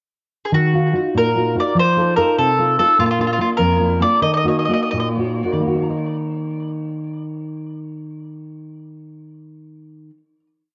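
Passionate and wistful, this short Italian folk serenade in 6/8 moves at 74-99 BPM in Eb harmonic minor, where a mellow, woody mandolin with tape echo picks a motif-based melody on doubled strings until 5.1 seconds over a dark, full-bodied nylon-string guitar thumbing oompah bass notes and chord figures, slowing from 3.0 seconds into a final chord at 5.7 seconds, all bathed in moderate spring reverb and a muffled cassette-tape sound.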